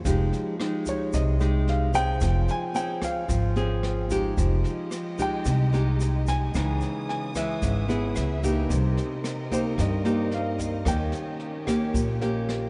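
A clear concert grand piano carries the melody in this breezy, sophisticated bossa nova excerpt at 111 BPM, entering at 0.9 seconds over a harmony that opens on Fm9 and moves through Dbmadd9, Dbm7 and Cm7 to Eb7. Up front, a fingerpicked nylon-string guitar with fresh strings and a woody pizzicato upright bass carry the groove, while a dark jazz kit played with brushes adds a boomy kick, rim clicks and snare, and a grainy tube shaker sits in the background. A lush violin section with vibrato joins at 4.4 seconds with sustained chords, and the whole ensemble sits in a vast, echoing cathedral space.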